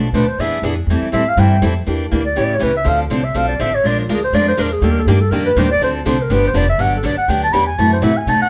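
Charming and lively, this short cut from a longer acoustic string swing piece in the jazz manouche style moves at a brisk 244 BPM in 4/4 with a light swung eighth-note feel. A breathy clarinet carries the melody as a solo from start to finish, dark and whispered in tone, with vibrato, soft attacks, scooped notes and an intimate, smooth top. Beneath it, a picked steel-string acoustic guitar provides bright, up-front accompaniment, its fresh strings and finger squeak adding sparkle. An upright bass played pizzicato anchors the low end with a woody, dark sound. The harmony travels through jazzy changes such as Am7, Em7b5, Dm7, Bb7 and Ebmaj7, arriving on Gmaj7 at 6.8 seconds as the opening section repeats. The trio plays together live in one room, wrapped in moderate studio reverb.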